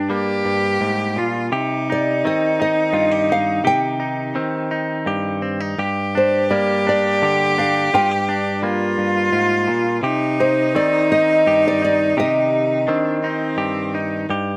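Dry, open-air sound with little reverb frames this melancholic, intimate acoustic folk-pop ballad, cut from a longer piece, moving at a slow 56 BPM in 6/8 in C minor over Gm and Cm. A full-bodied, fingerpicked nylon-string guitar carries the melody in a classical manner, while a single bowed cello adds a biting second line with light vibrato. A twangy, compressed clean electric guitar, recorded direct, plays the accompaniment, and all three parts share a slapback echo.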